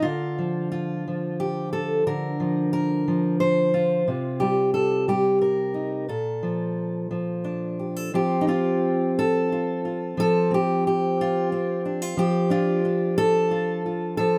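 A fingerpicked steel-string acoustic guitar with bright, fresh strings sits up front in this hopeful, gentle solo folk piece in Bb major, moving in a rubato 3/4 around 90 BPM through chords from Bb/D and Cm to Bbmaj7, then shifting at 8.1 seconds to F and Dm/F, captured by close, detailed microphones with light reverb in this short cut from a longer work.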